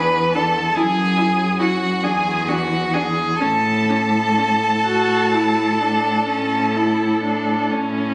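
An expressive, up-front cello sings the bass line with vibrato and portamento in this tender, lyrical slow romantic string quartet movement in a rubato 12/8, while the first violin carries the melody with a rich, focused tone, a smooth-topped, warm second violin sits forward on its own line, and the viola joins at 0.3 s with a bowed accompaniment, the whole passage being a short cut from a longer piece captured on a phone in a concert hall with moderate reverb.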